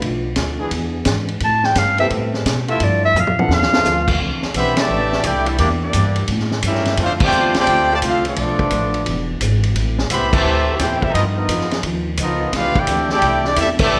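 A recital-hall reverb gives this joyful, brassy big band swing excerpt in C major, cut from a longer piece at 173 BPM, a roomy sheen, while picked acoustic guitar, woody pizzicato upright bass and a vintage kit with dark cymbals, a high-tuned snare and punchy kick drive it throughout. A clear clarinet with vibrato and scooped notes carries the melody from 1.4 seconds over mellow trombone chords and brief background piano, with a drum fill at 3.1 seconds. From 4.6 seconds a smooth-topped trumpet section takes the lead over a tight trombone second line, punctuated by full-band accents through to the end of the excerpt.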